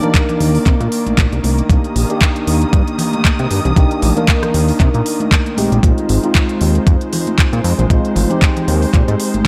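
A mellow tine electric piano with analog chorus and tape echo opens this sleek, sensual nu-disco excerpt over veiled, con sordino strings, handclaps, crisp hi-hat and rim click, and ringing high-tuned congas in the background, before a thumpy up-front electronic kick lands at 0.1 seconds and a fat, detuned sawtooth bass with a filter sweep joins at 0.4 seconds, the piano and strings pumping with sidechain compression as the chords move from Cm9 to Bb9sus4 at 5.6 seconds in a dark production with light reverb.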